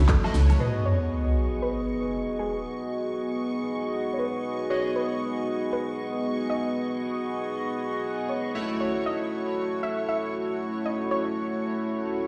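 Deep and warm, this deep house cut moves at 117 BPM in 4/4 with a swung sixteenth feel. It starts with a short burst in which a woody, round FM bass with tube saturation and sidechain pumping sits up front, and a very quiet jazz brush kit adds ride and snare. A fat, overdriven electronic kit with handclaps, hi-hat, shaker, snare and woodblock plays a drum fill in those opening moments. Both kits and the bass fall away by 0.6 seconds, where an up-front sub drop hits and rings until 2.6 seconds. The glossy, retro chorused polysynth stabs and a soft, gentle pluck melody with subtle chorus and tape echo carry the passage. Behind them, a smooth, warbling analog pad with chorus and a filter sweep, along with a shimmering string-machine violin layer in ensemble chorus, pumps against the sidechain over F#m7 and G#m7 chords, returning to F#m7 at 8.5 seconds, all heard as if through a big sound system in a bare stone room.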